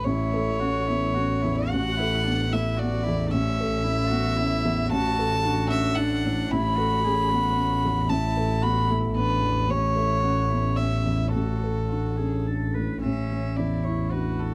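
Dark, lightly reverberant production frames this intimate, hopeful neoclassical piece for piano and strings in A major, a rubato 3/4 at 111 BPM in which a floating, pure, sul tasto violin carries the melody up front, a single cello with light vibrato sings a close second line, a felt-muted upright piano gives mellow, thick-felt accompaniment, and a rich double bass holds a low A with an airy bow beneath chords that circle through A, Esus4/A and D/A.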